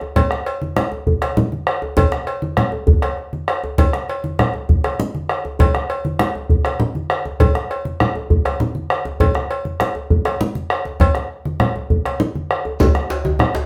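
West African traditional drum ensemble music, festive and powerful, moves at 133 BPM in a straight 12/8 feel, cut from a longer piece and set in a wet studio reverb heard from further back in the room. Bright, low-tuned congas and a tight, cracking djembe sit close and dry from the start, joined almost at once by a round bombo up front and a metallic cowbell. Near 12.8 seconds a second djembe enters up front in a live room, and a grainy, mellow shekere flickers briefly in the background before the congas, bombo and cowbell stop around 13.5 seconds, with the djembes ringing on to about 13.7 seconds.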